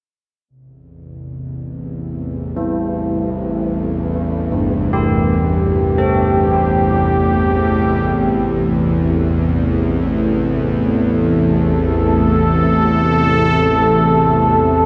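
Dark ambient drone, vast and ominous, cut from a longer piece: an evolving, airy, detuned pad with a filter swell and chorus sustains chords up front from 0.5 seconds, joined at 1.3 seconds by a tense, string-like drone in the low register with vibrato and its own reverb. From 2.6 seconds, old church bells ring out bronze, clangorous arpeggios with beating overtones and analog delay, sitting further back and fading out. An echo-heavy chamber reverb bathes the whole mix.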